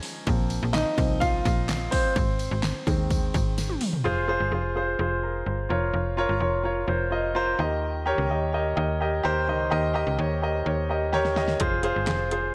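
Uplifting piano-driven pop excerpt in which a polished, up-front grand piano with slapback echo carries the chords throughout, a snappy FM slap-like bass joins at 0.3 seconds, a jingly tambourine sits in the background for the opening bars, and a punchy, layered pop drum kit with fat snare, metallic hats and handclaps plays through 4.0 seconds, drops out, then returns at 11.1 seconds, all set in a lush hall reverb for a big arena sound.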